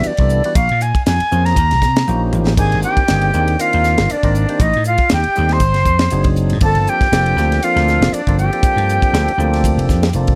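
Swung sixteenths drive this slick, intense electric jazz fusion excerpt, where a tight funk drum kit with bright cymbals and a high-tuned snare sits up front beside an amped vintage slap bass, a percussive tonewheel organ with key click turns through slow rotary comping, a reedy silver concert flute carries the airy straight-toned melody, and after a drum fill from 2.1 to 2.6 seconds a breathy bright jazz flute joins with a vibrato-laden second line under light reverb.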